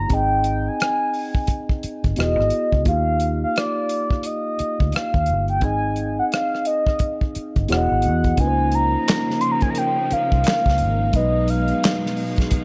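A mellow, horn-like synth lead fronts this smooth neo-soul and R&B excerpt at 87 BPM, its round, warbling sawtooth tone carrying the melody between D5 and C6 with a soft attack, vibrato, chorus and analog delay. Beneath it, a clean tine electric piano supplies direct, gentle accompaniment, while a vintage fingered electric bass sits up front with a dark, foam-muted, punchy sound. A dry acoustic soul drum kit with a tight kick, medium-tuned snare, rim click, hi-hat and handclaps sets a relaxed 16th-note swing, its top end rolled off. The harmony moves through lush major-seventh and ninth chords such as Abmaj7, Emaj9 and Ebmaj9, shifting to Dbmaj13 at 8.4 seconds, when a bowed studio string section enters underneath with smooth, even sustained chords. Light studio reverb gives the whole piece an intimate, unhurried glow.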